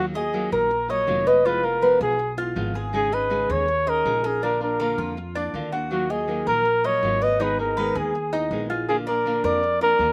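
Latin music with a sultry, danceable mood, this short cut from a longer piece moves at a brisk, straight pulse in a minor key. A bucket-muted trumpet carries the melody up front, its mellow, veiled tone shaded with vibrato and a soft attack in a jazz-style solo voice. Beneath it, a fingerpicked nylon-string guitar supplies full-bodied accompaniment, with audible finger squeak, while a Cuban tres enters at 0.2 seconds with picked arpeggios from its metallic double strings. A pizzicato upright bass with gut strings adds a woody, thumpy low end. The trumpet, guitar and tres each carry a slapback echo, and the recording sits dry in open air, free of room sound.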